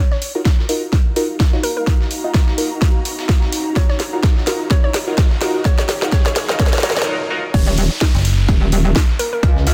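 A hollow, bouncy square-wave pluck opens this swaggering, gritty bass house excerpt in Eb minor at 127 BPM, with a 16th-note swing, its detuned line carried on chorus, cassette tape colour and dub echo. A punchy, overdriven electronic kick sits up front. Around it, a house kit with a cracking snare, bright hats and crash, and a very quiet, dusty sampler-style kit with a medium-tuned snare fill in the drums. A nasal, band-passed sawtooth chord stab on Ebmadd9 carries phaser, 12-bit sampler grit and a filter sweep through the build-up. An ethereal, airy pad in the background breathes with sidechain pumping and built-in reverb, while a riser climbs from 1.8 seconds toward a short break at 7.1 seconds. At the drop at 7.5 seconds, an aggressive, saturated metallic wobble bass enters, joined briefly by a decaying metallic FM bass note on Gb1, all pressed into a dense, heavily limited modern master.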